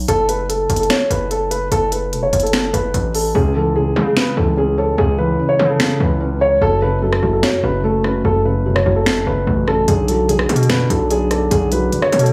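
Trap-flavored hip hop at 147 BPM in a half-time feel, this brooding, hard-hitting excerpt sits in F# minor and moves through F#m, C#m, F#m and Bm. A distorted 808-style bass starts at the very top, heavy and saturated with a noise layer over its sine core, hitting with a fast attack and decaying tones placed up front. From 0.1 seconds a dark grand piano carries a compact melody between G#4 and C#5, its smooth, vintage tone intimate and close, with the action noise audible. The electronic trap kit brings a sharp snare, crisp hi-hats, finger snaps and rim clicks, though the hats drop out from 3.3 to 9.9 seconds. At 3.3 seconds a felt-muted upright piano joins as accompaniment, soft and thick with felt, its own mechanism also audible, while a small studio room reverb adds modest space around the parts.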